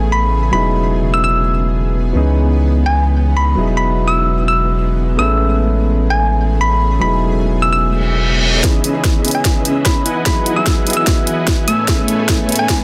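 A half-time 4/4 groove at 148 BPM underpins this playful future bass passage in E major, where a dark, mellow baby grand piano, a shimmering, ethereal pad with chorus and reverb, and a deep, saturated sub bass pump under sidechain while a round, tine-like synth pluck carries the melody up high through chorus and digital delay. A reverse cymbal at 8.0 seconds leads into a build-up at 8.6 seconds, where the sub bass drops out and a huge, detuned supersaw riff arrives under a low-pass filter sweep, joined by a punchy electronic kick and an overdriven trap kit with a sharp snare, bright hats and a drum fill. The chords move through Amaj7, Emaj7 and C#m9 on a dense, heavily limited master with light reverb.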